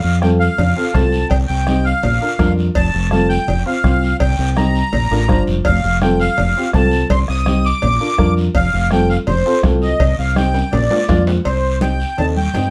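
Cumbia at 166 BPM in C dorian, passionate and danceable, with a reedy, sweet accordion carrying the melody up front over a round, dark fingered electric bass and a clear, woody, slightly detuned upright piano moving through F, Cm and Bb. A soft-beater bombo, ringing congas set in the background, a raspy, saturated guiro, and metal-shell cowbell and timbales joining at 0.6 s drive the straight 4/4 groove, with a drum fill at 10.5 s leading into a brief new section on Cm at 11.5 s. Moderate studio ambience places the band a little back in the room, and the clip is cut from a longer piece.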